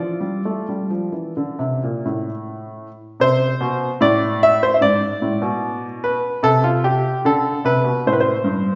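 Introspective and grave, this baroque-style suite movement for solo baby grand piano unfolds in 4/4 at a slow 65-77 BPM with a rubato feel, moving from D minor into A minor at 3.2 s, with the piano tuned slightly flat at A4 = 437 Hz. The piano sounds warm, present and up front, spanning G2 to E5 as the harmony passes from Dm to Am, a G#dim, and back to Am. A wet recital hall reverb adds a lingering decay, and the listener seems placed further back in the room in this brief cut from a longer piece.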